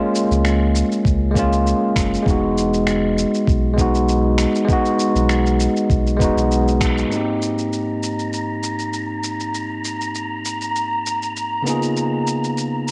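This sunset chillout excerpt opens on a bell-like tine electric piano, bright and clean, laying a rootless major-seventh chord and then a major-ninth chord with an analog delay trailing its notes, all sitting up front in the mix. A gritty, sampler-style shaker and finger snaps come in almost at once, followed by a round, deep analog bass and a thumpy, compressed electronic kick that give the first half a smooth, gently swung sixteenth-note lilt. The whole band hits an accent just before 7.1 seconds, where the bass and kick drop out and the harmony moves to a new major-seventh chord. From 7.7 seconds an airy, breathy tuned noise texture, wind-like and dark, drifts in on a single high note over the electric piano and snaps. A wet spring reverb and the soft haze of a home cassette recording give the piece a mellow, tape-worn glow, and it ends as it settles onto a lush thirteenth chord.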